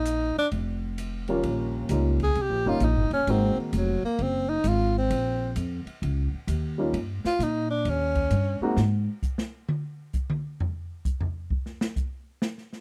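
Relaxed and unhurried, this small-group swing and bop excerpt moves at 131 BPM in a swung 4/4. A clear, close-miked tenor saxophone with gentle vibrato and a soft attack takes a solo from 1.4 seconds over woody pizzicato upright bass and a dark, intimate baby grand piano whose action noise can be heard in its brief accompanying passages. An airy drum kit with dark cymbals and a boomy kick plays throughout and takes its own solo from 8.8 seconds, all captured in a dry, close 1970s-style studio sound with small-room ambience.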